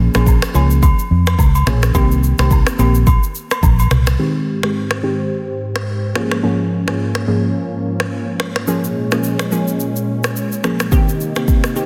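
Breezy and joyful, this afrobeats excerpt moves at 107 BPM in Ab major with a gently swung sixteenth-note feel. A glassy wavetable pluck with chorus and a low-pass filter carries the accompaniment throughout, its crystalline, fast-attack, decaying notes sitting up front. A foam-muted, round and punchy electric bass anchors the opening chords of Bbm7 and Cm7 before dropping out at 4.1 seconds, while agogo bells and woodblock add small-room acoustic color in those first moments. The electronic afro-pop kit runs the whole way, pairing a deep kick with finger snaps, rim clicks, shaker and toms, and a touch of soft clipping on the snare. From 4.2 seconds a detuned sawtooth pad with a slow attack and a mellow, nasal edge enters on Abmaj7, sustaining chords under a filter sweep as the harmony moves through Db6/Ab back to Bbm7 and Cm7, all within a dense, heavily limited modern mix with light reverb.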